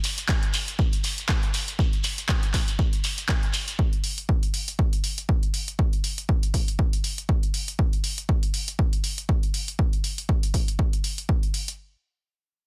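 A punchy analog kick drum sits up front in this gritty, trippy house excerpt, entering at 0.3 s with a tape-warm thump that carries the feel of being re-recorded in a small room. The groove moves at 120 BPM in 4/4, with a light 56% swing on the sixteenths. Alongside it, an analog drum machine supplies handclaps and hi-hat, also placed close and sharing that small-room, tape-colored character. A grainy, mellow shekere opens the clip from a distance, sounding as if it were captured in a large room, and it drops out at 3.8 s. The mix is dry, with little reverb, and the master is dense and heavily limited, giving the cut a compact, modern punch through to its end at 11.8 s.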